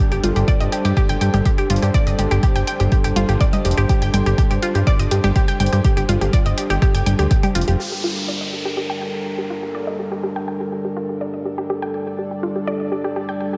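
This melodic techno cut from a longer piece, in G minor at 123 BPM, opens on a mellow, detuned analog pad holding sustained chords beneath a lush, ring-modulated unison pluck playing arpeggios through delay, both pumping with sidechain and setting a dramatic, cinematic mood. A funky sawtooth bass and electronic hi-hat, claves and congas enter at 0.1 s, and a punchy, up-front analog kick follows at 0.5 s. The kick drops out at 7.4 s, and the bass and remaining drums stop at 7.8 s, where an electronic downlifter sounds over the pad and pluck on a G minor chord. The mix is dreamy and soaked in church reverb.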